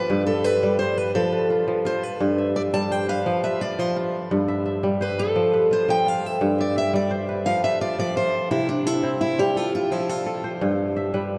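West African traditional music in a straight 12/8, joyful and hypnotic, taken from a longer piece. A picked steel-string acoustic guitar carries the melody from the start, featured as a solo until 8.5 seconds, with a warm tone and audible finger squeak. A mellow, ringing kora plays crisp fingerpicked arpeggios beneath it, reaching deep into its low register and continuing after the guitar stops at 10.5 seconds. Both instruments sit up front, bathed in a long cathedral reverb that places them in a vast, echoing space. The harmony rocks between G and F before shifting through C and F and returning to G in the closing stretch.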